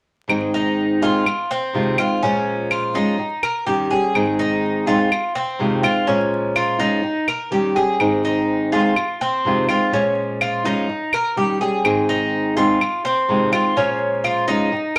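A relaxed slice of Cuban son and guajira, cut from a longer piece, moving in a straight four through a looping cycle of Ab, Fm7, Bbm7 and Eb7. Up front, a fingerpicked classical nylon-string guitar with a warm, fresh-stringed tone carries the accompaniment, while a bright, metallic Cuban tres, its doubled strings partly in octaves, picks arpeggios from 0.5 seconds. Woody, close and dry claves keep time throughout, and the whole sits in a wet studio reverb with vinyl crackle.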